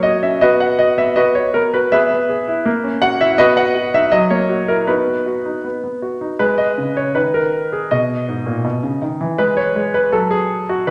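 Cheerful and playful, this short excerpt from a classical-period piano sonatina in 2/4 has a straight pulse. A solo concert grand sits up front with a clear yet worn tone, deep bass and short sustain, heard inside a wet recital hall reverb. After opening on bright major harmonies, the music turns to a minor-mode passage at 6.4 s that runs until the end at 10.9 s.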